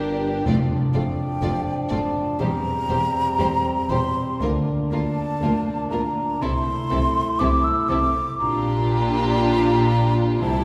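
Tender and warm, this slow, rubato romantic orchestral passage, cut from a longer piece, sets a pure, floating violin melody over a woody second violin line, lush violas and ringing harp arpeggios in the background, with soft-attack cellos and dark double basses below, while French horns hold sustained chords and hard-mallet timpani strike from 0.5 s, and an airy, hollow flute joins up front at 0.9 s, all bathed in a wet concert hall reverb heard from further back in the room.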